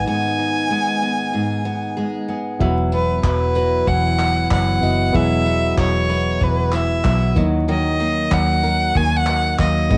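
This short cut from a longer acoustic pop piece has a homespun cassette sound, with vinyl crackle and a moderate studio reverb around the parts, and a reflective, wistful mood with a gentle sixteenth-note swing. Up front and close, a single bowed violin carries the melody with a rich, smooth vibrato, its tone further colored by its own cassette-tape and plate-reverb treatment. Beneath it, a fingerpicked flamenco guitar supplies accompaniment, a full-bodied dreadnought steel-string acoustic plays picked arpeggios, and a vintage foam-muted fingered electric bass adds a round, punchy, amped low end. A break runs from 0.1 to 2.6 seconds over G#m, and then a cloth-damped, thuddy drum kit with a tight kick, handclaps and tambourine enters alongside a clean, reedy electric piano sitting in the background. The harmony moves from Esus2 at 2.6 seconds to D#m at 7.4 seconds, and the drums' dark, rolled-off top stays smooth and warm beneath the singing violin.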